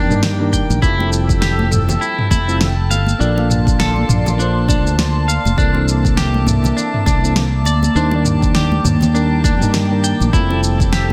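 Sunset chillout with a sunny, blissful mood, cut from a longer piece and moving with a gentle swing on a steady four-beat pulse. A round, dark fretless bass sits up front, while soft, warbling electric-piano-like synth keys carry the accompaniment through chorus, delay and shimmer reverb over lush seventh and ninth chords. An airy, breathy pad holds sustained chords with chorus and phaser, and a clean, twangy electric guitar picks bright arpeggios coloured by vintage 12-bit sampler grit, delay and shimmer reverb. A faint glassy texture of drifting overtones floats in the background, with the deep house kit's fat snare, shaker and toms entering at 0.1 seconds, a deep, tape-warm electronic kick at 0.5 seconds, and damped, high-tuned congas at 0.7 seconds. The whole mix is set in light reverb and digital ambience.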